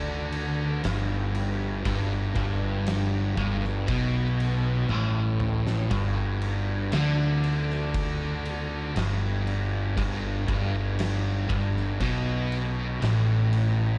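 Stoner and doom metal, heavy and brooding, in a slow, straight 4/4 that sits on a G5 chord in a dark, warm production with light studio reverb, cut from a longer piece. Two thick fuzz guitars, one pushed through extra distortion and the other kept very quiet, share the riff with a bright, double-tracked overdriven electric guitar, all low in the mix, while a growly fuzz fingered electric bass adds punchy overdriven weight beneath. An oversized low-tuned drum kit with a fat snare, punchy kick and dark cymbals, saturated and rolled off on top in a bright stone room, enters at 0.3 seconds and plays a fill from 4.9 to 5.9 seconds.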